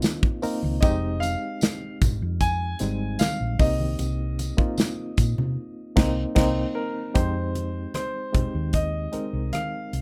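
A steady, straight 4/4 pulse at 76 BPM drives this lush 1970s-style soul excerpt in F minor, its mood bittersweet and smooth. Up front sits a modern acoustic drum kit with a tight kick, medium-tuned snare, rim clicks, hi-hat and crash cymbal, heard in a small room. Low-tuned congas with a thick skin and soft hands sit in the background, joined by a jingly, vintage-sounding tambourine that drops out at 5.4 seconds. A dark, round hollow-body bass enters at 0.4 seconds, and a barky, reedy electric piano adds lightly overdriven chords with a fast tremolo, heard through its built-in speakers. At 0.8 seconds a natural concert grand piano with deep bass takes the melody, moving through Cm7 and Fm7 changes. A band accent between 5.6 and 7.2 seconds leads into a new section on Fm9, all captured in a dry, rough home demo mix.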